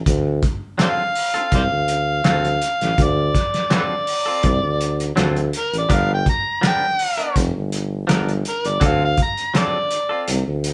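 A straight-eighth groove in 4/4, with a light swing on the sixteenths, drives this rollicking, gritty soul blues excerpt. A cloth-damped, thuddy drum kit sits up front with a fat snare, a tight kick and hi-hat, its muffled, lo-fi sound rolled off at the top. A warm tuba carries the bass line from the opening, with a light vibrato. From 0.8 seconds an amplified, overdriven harmonica takes the lead with vibrato, tongue slaps and scooped notes in a jazz style. A bright, twangy clean electric guitar, picked and compressed, adds stabs. The harmony moves from D7#9 to G7#9 at 5.9 seconds and back at 8.8 seconds, and moderate reverb gives the feel of a band playing live together in one room.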